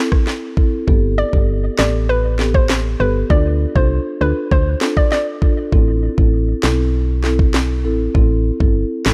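A dry, gritty recording with little reverb carries this sultry, tough dancehall excerpt in A minor at 99 BPM, moving through Am, Gadd9 and Dm. A woody marimba with soft mallets lays down mellow accompaniment from the start, while an up-front electronic drum kit brings a knocking kick, sharp snare and rim clicks, and a punchy, round, dark FM bass enters at 0.9 seconds. From 1.2 to 5.5 seconds a hollow, bouncy square-wave pluck carries the melody, detuned and treated with chorus and tape echo.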